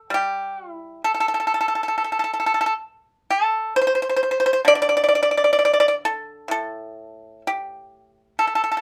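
A solo pipa opens this brief excerpt from a longer Chinese traditional piece, played with fingerpicks in the A yu mode at a rubato 66 BPM in 4/4. The close, dry pluck has a percussive bite, ranging from A2 up to D5, and carries a longing, elegant mood. A modest small-room reverb frames the sound, as if heard live in one room.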